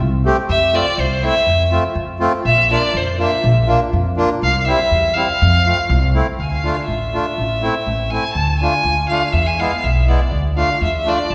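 Bittersweet and festive, this klezmer excerpt in 2/4 at 122 BPM moves from a bright F major opening into a darker D dorian sharp4 mode at 6.4 s, with a clear, focused violin carrying the bowed, vibrato-laden melody over reedy single-reed accordion chords and a woody, growly pizzicato upright bass, all bathed in the long reverb of a concert hall.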